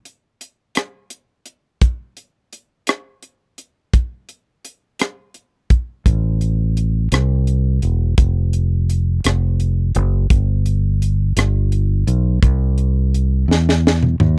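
Soulful and uplifting, this slow gospel excerpt in 6/8 at 57 BPM in C major opens on a crisp, airy fusion drum kit with a high-tuned snare, tight kick, rim clicks, hi-hat and toms, joined at 6.1 seconds by an up-front, warm fingered electric bass in a low register, all captured in a dry, close 1970s-style studio sound before a drum fill at 13.5 seconds.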